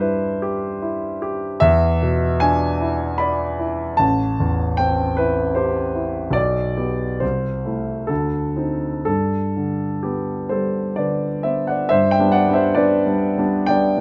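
The recording has a close, detailed sound, with a moderate large-studio reverb giving the instrument a sense of space. This is a short fragment of a romantic classical nocturne for solo grand piano in G major, dreamy and nostalgic in mood. The piano is warm and natural, placed up front, and covers a range from A1 to B5 across the 14 seconds. The tempo moves freely between 58 and 79 BPM in a rubato 3/4. The harmony drifts from Em/G through E7 and Am7, passes through G/B, Am/C and D5, and settles on G at 9.1 seconds before the opening material returns at 11.9 seconds.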